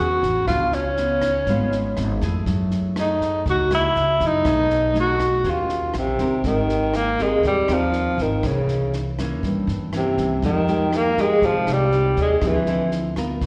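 Heard through a venue's PA in a moderate club reverb, this relaxed, sophisticated bossa nova excerpt features an intimate, breathy tenor saxophone up front, its subtone melody marked by light vibrato and scooped notes with a slapback echo, over full-bodied fingerpicked nylon-string guitar chords that also carry slapback echo, a woody pizzicato upright bass, and a dark, dry cocktail drum kit of punchy kick, rim click and high-tuned snare entering at 0.2 s, with the harmony moving into a new section of rich ninth chords at 6.4 s and the saxophone falling silent at 12.9 s.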